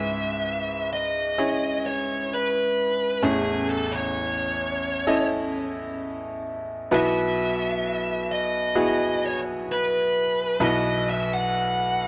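A bluesy, overdriven lead guitar with a dark, distorted edge carries the melody over a bright, woody upright piano in this emotional, heartbroken pop excerpt at a slow 65 BPM, moving through C#m7, A and Esus2/B in a dry, close 1970s-style studio sound where both parts sit up front.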